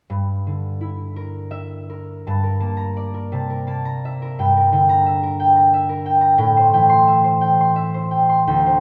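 A wet recital hall reverb surrounds this short classical passage, giving a concert harp that sits up front a ringing, warm resonance. The solo harp plays from 0.1 s to 8.8 s, a brief cut from a longer piece, and its fingerpicked lines range from D2 up to C6. The mood is wistful and gentle, moving in a rubato 6/8 at roughly 50-61 BPM counted in dotted quarters, in G dorian with tuning at A4 = 442 Hz. An opening Gm6 gives way at 2.3 s to a new passage that moves through Gmadd9, C13 and back to Gm6 before settling on Am7 at 6.4 s.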